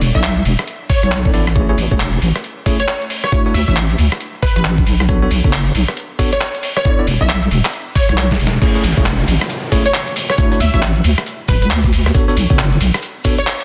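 Dense and heavily limited, this excerpt of sunny, bouncy UK garage sits in light digital ambience, with a two-step swing at 136 BPM in A major. A deep, dark wobble bass of detuned square and sine tones sits up front, thickened by chorus and tube saturation. A gritty, pitched-down sampler-style kit of snare, rim clicks, handclaps, hi-hat and crash, with soft clipping on the snare, plays beside a thumpy electronic kick, both in studio reverb. Over the top, a punchy, bright unison lead of sawtooth, sine and noise, with vibrato and a filter sweep, sings a catchy line through lush chorus and tape echo. A worn, slightly out-of-tune tine electric piano adds lightly overdriven stabs that sound as if played through built-in speakers, over chords of E7sus4, Amaj7, Dmaj9 and Bm9. A drum fill at 8.2 seconds leads into the drop at 8.6 seconds, where grainy, mellow maracas and a downlifter join in the background.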